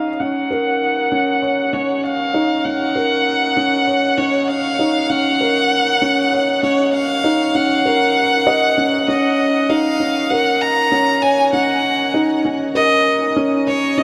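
A rich, bowed solo violin with vibrato and a felt-muted upright piano open together on an Ebm7 chord, the piano's dark, intimate riff carrying audible action noise while the violin's melody passes through a low-pass filter, shimmer reverb and digital delay. This cinematic, hypnotic electronica excerpt moves at 98 BPM in 4/4 in Eb minor, tuned to A4 = 442 Hz, with a build-up that gives way to a drop at 9.1 seconds. A huge ambient reverb with a long 6.7-second tail surrounds both parts.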